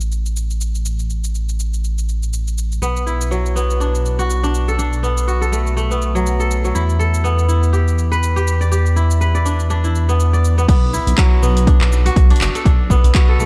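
Hypnotic and earthy, this afro house excerpt at 122 BPM in B minor opens on a deep, rumbling detuned saw bass pumping against a tape-warm house kit of crash, handclaps, shaker and warm hats, with a bright, ringing fingerpicked kora entering at 2.8 seconds through dub echo over Bm7 and Em chords before a punchy, up-front electronic kick lands for the drop at 10.7 seconds in a dark, lightly reverberant mix.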